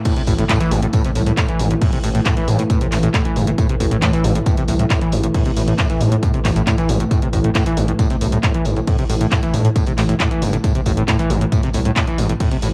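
A deep, detuned ambient pad drone in A minor and a cloth-damped, thuddy acoustic kit with a fat snare and tambourine open this dark, industrial peak-time techno excerpt at 136 BPM. They are quickly joined by a heavy layered electronic kick, a large-room techno kit of handclaps, hi-hats and crash with pumping cymbals, and a squelchy, bright overdriven acid bass riff up front with lush chorus and analog delay. From 0.3 seconds a gritty, aggressive sawtooth synth bass with oscillator sync and a resonant filter pluck enters. Cassette tape colors every part but the synth bass on this light-reverb home recording.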